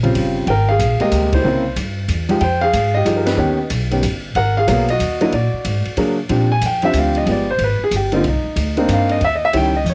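In a small room's ambience, this playful, relaxed jazz piano trio swings at 185 BPM in 3/4 in Eb major: an up-front, natural-sounding baby grand carries the melody over a woody, plucked upright bass and a quieter acoustic drum kit with a high-tuned snare and boomy kick, the band hits accents at 1.3 and 3.2 seconds, and the piano takes a solo from 6.3 seconds as rich extended and altered chords pass by in this short cut from a longer piece.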